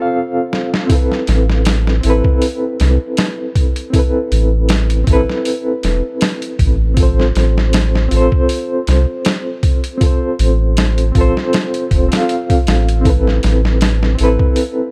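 Trip hop at 79 BPM in A minor with a cinematic, smoky mood, this excerpt sets a reedy electric piano with fast tremolo and tape echo against a gritty, pitched-down boom bap drum kit that opens with a fill at 0.5 seconds, while a deep, round dub sub bass enters at 1.3 seconds beneath chords moving between Amadd9 and F/A.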